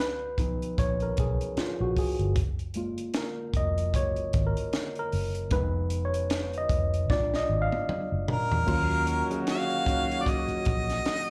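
Heard through a live club PA with light reverb, this smooth, silky fragment of lush 1970s-style soul opens on a worn, slightly out-of-tune tine electric piano soloing over a round, foam-muted electric bass and a dry, punchy cocktail kit with dark cymbals, a drum fill from 7.1 seconds leading to a clear, scooped harmonica melody from 8.3 seconds and a mellow horn section adding octave-doubled stabs from 8.7 seconds.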